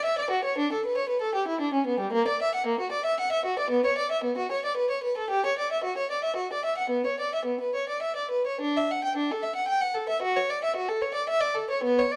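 A rich solo violin, bowed up front with vibrato and a smooth, even tone, carries this flowing, dance-like baroque-style suite movement in three-beat metre with a rubato feel, ranging from G3 to G5 across a 12.2-second excerpt set in a moderate stone-room reverb with a dark production.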